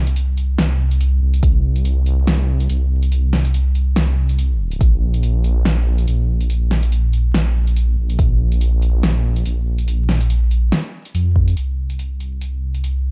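A dark, detuned sawtooth bass leads this cavernous deep dubstep excerpt, rumbling and beating up front from Bb1 to F2 with a fast attack and sustained, sine-rounded tone across the full 13.1 seconds. At 142 BPM in a half-time 4/4 feel with light swing on the sixteenths, a low-pass filtered deep house kit supplies muffled hi-hats and a fat, tape-warm snare from 0.1 seconds, while a deep, up-front electronic kick lands sparingly, first at 1.4 seconds. The dry, dark and warm production carries a layer of vinyl crackle, with a brief new section arriving at 11.6 seconds.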